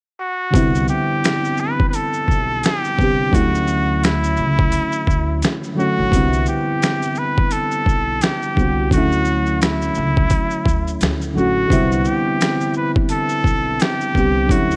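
Lo-fi hip hop with a dreamy, mellow swing, where a nasal, breathy straight-muted trumpet carries a jazz-style melody with vibrato and slapback echo from 0.2 s, joined at 0.5 s by soft, chorused felt-like synth keys alternating Cmaj9 and Dmaj9, a woody pizzicato upright bass, and a gritty, overdriven boom bap sampler kit of thumpy kick, snare, hi-hat, shaker and finger snaps, all under light reverb and a worn cassette warble with drifting pitch.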